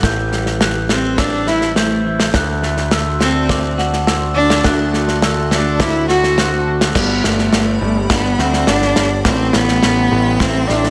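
Post-rock in a soaring, euphoric mood, where a loose, up-front indie drum kit and a growling overdriven bass drive under delayed semi-hollow guitar arpeggios, a bell-like glockenspiel that rings until 7.0 s, a close, bowed cello melody with vibrato and portamento entering at 0.9 s, and an icy, crystalline pad with chorus arriving at 3.1 s, all in a small room with light reverb.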